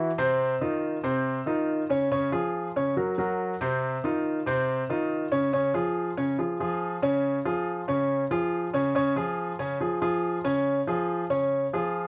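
In a straight, driving 4/4, this fiery jazz fragment, cut from a longer piece, features a lone grand piano spanning C3 to Db5, sitting close and up front with a clear, intimate, natural tone and audible action noise. The harmony moves from F5 through Db and Gb before returning to F5 and landing on Db as a repeated section begins at 5.5 seconds. A moderate studio reverb surrounds the playing, and a worn cassette-tape character adds a warbling pitch drift to the sound.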